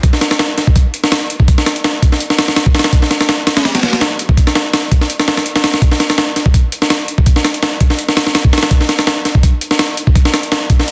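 Wrapped in vinyl crackle, light digital reverb and a dense, heavily limited master, this frenetic, nostalgic drum and bass fragment runs at 166 BPM with a gently swung feel, carried for its full 10.9 seconds by an up-front, sampler-style breakbeat kit whose compressed, pitched-up grit pairs a thumpy kick with a high-tuned snare and hi-hat.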